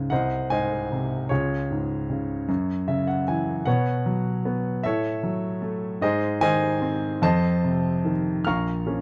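Classical solo piano in a lyrical, tender and calm mood, this brief passage from a longer piece moves at a slow 51 BPM in 6/8 with a free, rubato feel. A clear, intimate baby grand sits up front across a range from Bb1 to F6, its natural tone carrying audible action noise and a short fill between 2.5 and 3.7 seconds. Light reverb and a dark production frame the harmony as it drifts from G#/B# through F#m/A and F7 to settle on Bbm.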